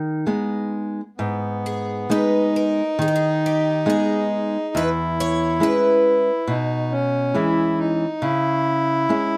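The rhythm is loose and rubato, a slow 4/4 at 69 BPM in G# harmonic minor, giving this short fado-style ballad excerpt a mournful, longing feel. A fingerpicked nylon-string guitar, small-bodied and up front, carries the accompaniment from the start to 9.4 seconds, while a picked twelve-string acoustic guitar sings the melody above it with a bright, shimmering, octave-doubled tone until 6.4 seconds. At 1.2 seconds a reedy, single-reed accordion with dry tuning joins as a second line, clear and close in a boxy small-room sound. The harmony moves from G#m to E6 at 4.7 seconds and settles on C#m near the end. Light reverb gives the intimate trio a little air, and the passage is cut from a longer piece.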